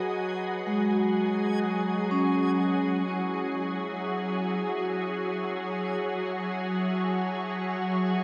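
Ambient piece at 62 BPM in F# dorian, melancholic and reflective, moving from G#m/F# to F#m9 at 3.1 seconds in this 8.2-second excerpt from a longer work. An up-front, pure organ-like pad holds sustained chords with ensemble chorus, while a dark, ringing vibraphone played with medium hard mallets and motor off spins arpeggios through tape echo. For the first 3.1 seconds a reversed, dreamy granular texture sits in the background, and a wet shimmer reverb with an 8.8-second tail bathes the sound.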